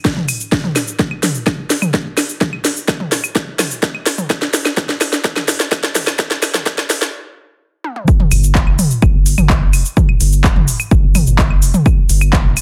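Melodic techno at 127 BPM in a straight 4/4, hypnotic and dark, this short cut from a longer piece builds over an overdriven, up-front electronic kick and a layered techno kit of claves, handclaps, shaker, toms, a cracking snare and smooth hats, with sidechain pumping on the toms, hats and percussion. A drum fill runs through the build-up until a stop at 7.1 seconds. The drop arrives at 8.1 seconds, and at 8.3 seconds a round, deep analog bass with a fast attack and sustained sine-like tone enters, pumping between F1 and G1. The sound is dense and heavily limited, lightly touched by reverb and high-pass filtered.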